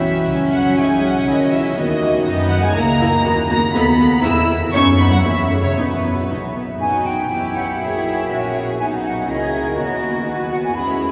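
In a brisk, straight 2/4 at 121 BPM, this graceful, spirited classical-period movement for symphony orchestra, cut from a longer piece, moves through B major. Bowed sul tasto violins carry the melody with a pure, floating tone that sits at a distance, while a second violin line plays further in the background. Violas fill in the accompaniment with a smooth top. Cellos add a close, intimate bass with vibrato beneath, and double basses supply a dark, softly attacked foundation. A dark, roomy French horn section holds sustained chords far behind. At 6.8 seconds, as the opening section begins again, a silver concert flute steps up front with a crisp attack and expressive vibrato, adding a second line. The whole sits in a deep cathedral reverb with a long seven-second tail.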